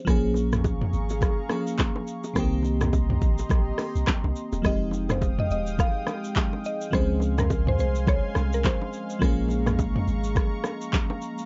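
A dry mix with trimmed highs carries this hypnotic, mellow afrobeats excerpt at 105 BPM in F minor, where an up-front deep house drum kit of deep kick, handclaps, rim clicks, toms, hi-hat and shaker swings over a punchy sine sub bass and bright, close congas and bongos in the background, while a crystalline FM electric piano and a smooth, detuned sawtooth pad, both with chorus, move through Bbm7, Cm7, Fm9 and Dbmaj7, and a woody, round mallet-like synth pluck with chorus and analog delay carries the melody from 4.7 to 9.1 s.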